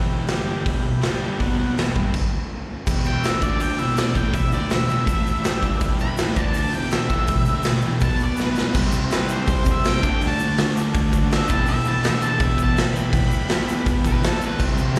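Raw and swaggering, this garage rock cut in E minor at 164 BPM opens with a double-tracked, compressed fuzz guitar riff up front over buzzy, vibrato-tinged overdriven combo organ chords in the background, joined at 0.3 seconds by a punchy, saturated drum kit with a rolled-off top. After a brief full stop, a grainy tube shaker enters at 2.9 seconds and a dark octave-fuzz lead guitar carrying a slapback-echoed melody follows at 3.1 seconds. An organ fill and a drum fill lead into a closing stretch over C and D, captured as a live gig through the venue's PA with recital hall reverb.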